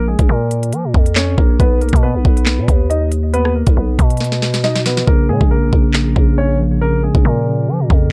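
Dry and dark, this brief cut from a longer drill track sits in a close, warm mix at 138 BPM, moving with a half-time feel in Bb phrygian. A baby grand piano carries the melody with a shadowy, long-sustaining tone, dulled by a low-pass filter and trailed by delay. Beneath it, a growling, buzzy 808-style bass with a fast attack and a decaying tail sits up front. The electronic drill kit enters at 0.2 seconds with a knocking kick, sharp snare, crisp hats, handclaps and rim clicks, and it is the most forward element in the mix. The harmony moves from Bbm to B and back. After a drum fill starting at 4.2 seconds, the hi-hats drop out at 5.1 seconds as a mellow, clean tine electric piano joins with filtered accompaniment through its built-in speakers, keeping the mood cold.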